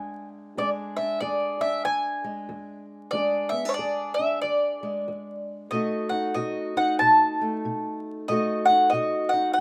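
A loping swing in four drives this short fragment of acoustic country blues, a soulful, swaggering duo sketch cut from a longer piece. A bowl-back mandolin carries the melody up front, its picked double strings ringing with a warm voice high in its range. Beneath it, a fingerpicked steel-string parlour guitar supplies the accompaniment at a lower level, its old strings giving a dark, woody, boxy tone that spans from deep bass notes into the middle register. Both instruments play together throughout the 9.6 seconds, moving from an E7 chord to B7 at 5.7 seconds. The sound is a rough home demo in a small room, with vinyl crackle adding a worn, lived-in grain.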